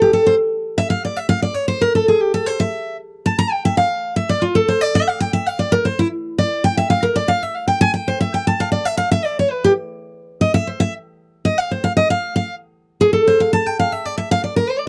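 Set in a dark, warm production with a light touch of reverb, this short fragment of a longer bluegrass piece puts a single picked steel-string acoustic guitar up front. The instrument has the bright, full-bodied ring of a dreadnought. It plays solo throughout at a brisk 230 BPM in straight 4/4, in F major and tuned slightly high to A4 = 444 Hz. The mood is driving and rustic, with the line ranging from E4 up to Bb5. The solo runs as one passage from 0.0 to 12.6 seconds, then continues in a brief new phrase from 12.6 to 14.9 seconds, where the fragment ends.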